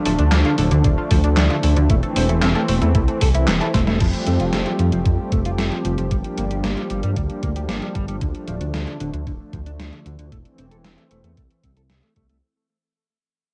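A smooth, warbling analog pad with lush chorus and sidechain pumping opens this nostalgic, romantic synthwave fragment beside a round pluck arpeggio tucked in the background until 3.9 seconds, joined by a clean, fingered electric guitar riff with analog chorus and delay, a deep, rumbling detuned saw bass up front, a gated 80s drum machine with handclaps, hi-hat, crash and gated-reverb snare, and a thumpy electronic kick, before a drum fill at 3.7 seconds leads into a filter sweep on the guitar as the music fades out from 4.0 seconds in a lightly reverberant home cassette recording.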